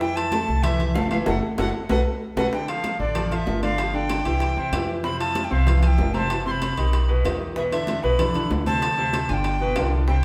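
Salsa at a fiery, danceable 191 BPM, this short excerpt cut from a longer piece sets an airy wooden alto recorder with vibrato on the melody over a brilliant, up-front concert grand piano with deep bass and a woody, thumpy upright bass played pizzicato on gut strings. Behind them, high-tuned congas struck with hard hands sit compressed and saturated in the background, tight bongos stay very quiet, and ringing metal-shell timbales enter at 0.2 s, all within a stone room's reverb as the band plays live together. A band accent at 1.3-2.5 s, joined by a drum fill from 1.6 s, leads into the next passage, where the chords move from Dmadd9 through B7b9b13/F# and Baug before settling on Dm7 and G7.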